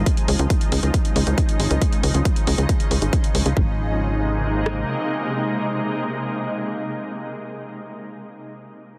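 A shimmering, ethereal pad with an octave-up layer and detuned unison opens this uplifting, euphoric trance excerpt in Ab major at 137 BPM, holding Dbadd9 and then Abadd9 chords with chorus, built-in reverb and sidechain pumping, alongside a tight, driving sequencer bass of sawtooth and square waves with ring modulation and a fast filter pluck, also pumping. An up-front big-room electronic kit with a layered, punchy kick and rim click arrives almost at once, together with a dry analog hi-hat that stops at 3.5 s; the kit and bass drop out at 4.8 s, leaving the bright pad alone until 7.5 s. Light reverb and heavy, radio-like compression shape the sound.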